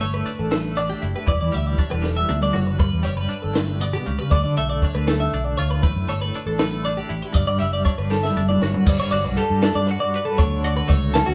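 A playful, intricate math rock and midwest emo excerpt in 6/8 at 79 BPM opens with the full band together: a bright, twangy twelve-string electric guitar up front picking tremolo-laced G lydian chords like A9sus4 and Em9, while a second clean, compressed twelve-string spins arpeggios through spring reverb. Beneath them a punchy fingered bass anchors the harmony, and a compact cocktail kit with dark cymbals, a high-tuned snare and tight kick sits close in the mix, adding drum fills at 2.0 and 8.1 seconds. The moderate stone-room ambience gives the live ensemble a natural feel as the progression shifts to Gmaj9 at 8.9 seconds and then Dmaj7 at 10.4 seconds.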